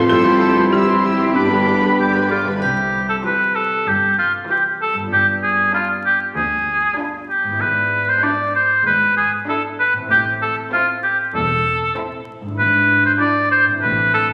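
A vintage-tinged oboe sits up front in this quirky, magical film cue in C major at 96 BPM, carrying a second line over ringing, thumb-plucked harp arpeggios, while a lush viola section supplies accompaniment and distant cello and double bass sections hold the bass. For the opening 2.3 seconds a woody folk marimba with hard mallets and a pure concert flute join a smooth clarinet and a dark French horn section's sustained chords, and a triangle touches in at 2.6 s. Two bowed violin sections with rich vibrato carry the melody and a lower second line in the background, with recital-hall reverb and vinyl crackle over the recording as this excerpt moves toward A minor.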